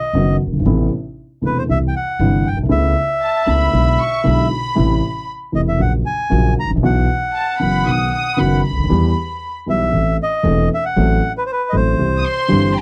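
A reedy, dark bandoneon sits up front and carries the melody in this dramatic, passionate tango excerpt, cut from a longer piece and played with a rubato feel around 116 BPM in 4/4. Beneath it, a mellow concert grand piano with a deep bass and short sustain provides the accompaniment, also close and present, while a woody, thumpy upright bass plays pizzicato on steel strings. At 3.2 seconds a studio violin section enters with a second line high above, bowed sul tasto with a soft attack, pure and floating. The harmony moves restlessly through chords such as Amadd9, E7/B, Bsus4 and F#dim/A before settling on C. The sound is a dry, close 1970s-style studio recording with little reverb, and the piano has a vintage character.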